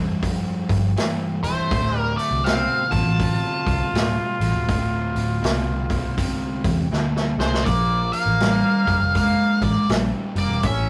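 Brooding and heavy, this swung slice of blues rock and southern rock rides a dark, double-tracked fuzz guitar riff over a round, foam-muted picked bass and a punchy vintage drum kit with a rolled-off top, which drops a fill at 6.9 seconds. From 1.4 seconds an up-front octave-fuzz lead guitar sings high through wah and distortion, while a breathy plunger-muted trumpet adds a jazz-style second line with scooped notes and light vibrato. The moderate small-room reverb gives the whole a rough rehearsal-room feel.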